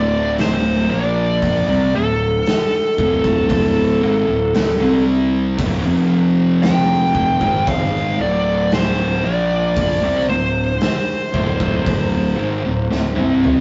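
Over a slow, straight 4/4 pulse, this sludgy, ominous stoner-doom excerpt stacks a double-tracked, up-front riff on thick fuzz guitar with a growly, overdriven fingered bass and a wah-drenched fuzz lead melody, while an oversized low-tuned acoustic kit with a punchy kick and saturated, rolled-off top enters at 0.4 seconds and closes with a fill from 12.9 seconds, all moving from D minor to F5 and back inside a rough rehearsal-room recording with stony reverb.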